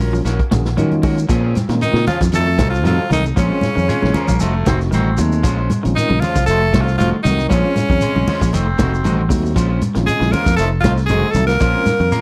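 A raspy, forceful tenor saxophone carries the melody with light vibrato and a slapback echo from 1.8 seconds, with a clear trombone beneath it and a gritty baritone saxophone joining at 3.9 seconds, in this intense, defiant afrobeat passage in Bb minor at 116 BPM with a light swing. Before the horns, a barky, overdriven tine electric piano with fast tremolo plays a short fill from 0.3 seconds, then settles into background accompaniment alongside two twangy, slightly broken-up electric guitars, one picking very quiet arpeggios and the other playing stabs through spring reverb. A round, up-front fingered bass, a punchy vintage drum kit with a rolled-off top, thick-skinned congas and a grainy shekere drive the groove through a dry, close 1970s-style studio sound, as the chords alternate between Bbm9 and F7b9.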